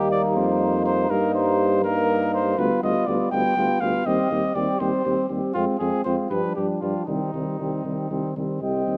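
A mellow trumpet carries the melody up front in this brief classical brass quintet passage, a triumphant, warm-hearted piece in C minor moving at 81 BPM in a straight 6/8. Beneath it, a dark trumpet with light vibrato and a smooth top sings a second line from the background, while a dark trombone and a French horn with a soft attack, distant and roomy in tone, fill in the accompaniment. A clear tuba with a vintage character anchors the bass from C2 to G2. All five parts play together throughout the 9-second span, which is cut from a longer piece. The harmony opens on Eb, passes through G7/D and Fm, and settles on Cm at 7.1 seconds, captured by close, detailed microphones with light reverb.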